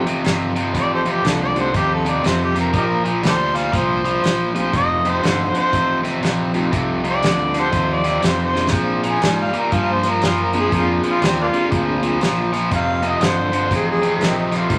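Rollicking and swaggering, this electric blues shuffle swings on a bright, compressed, overdriven guitar riff sitting up front, over round, punchy fingered bass and an airy, polished country drum kit with a punchy kick, which enters at 0.1 seconds and plays a fill at 8.5 seconds. From 0.7 seconds a mellow harmonica with light vibrato, touched by overdrive, takes a jazz-styled solo full of tongue slaps and scooped notes, while a soft, flute-like tonewheel organ with vibrato turns slowly through a rotary speaker in the background. A large, wet studio reverb and vinyl crackle colour this excerpt, which is cut from a longer piece.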